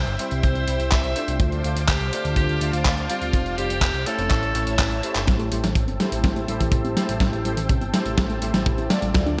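Italo disco at 124 BPM in D minor, melodramatic and nostalgic, where an edgy, scooped alto saxophone carries the melody through digital delay until 5.0 seconds over lush string machine chords, fat sawtooth bass, bold nasal synth brass stabs with chorus and tape character, a tight up-front kick, and a gritty, overdriven sampler-style kit of handclaps, hi-hat and snare in gated reverb, whose fill at 4.8 seconds ushers in a punchy unison pluck arpeggio in the background from 5.3 seconds, all within a bright 1980s-style digital production.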